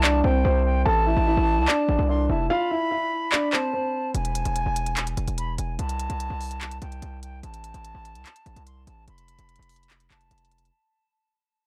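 A dark, mellow grand piano with audible action noise carries the melody through a low-pass filter and tape echo until 4.1 s, while a distant, airy flute plays a straight-toned second line and a heavy, saturated 808-style bass and crisp electronic trap drums with handclaps drive a brooding, eerie half-time hip hop groove across this dry, gritty cassette-tape fragment that fades out over its full length.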